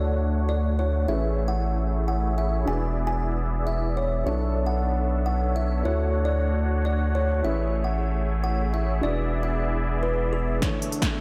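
Bittersweet and lush, this half-time future bass excerpt sets a woody kalimba melody over a dark, boxy baby grand piano, huge detuned supersaw chords and a deep saturated sub bass, all pumping with sidechain, the upper three parts also echoing through analog delay in a dreamy, reverb-soaked hall, until at 10.6 seconds a punchy overdriven kick and drum kit with crisp hats burst in for a brief fill alongside a barely audible riser.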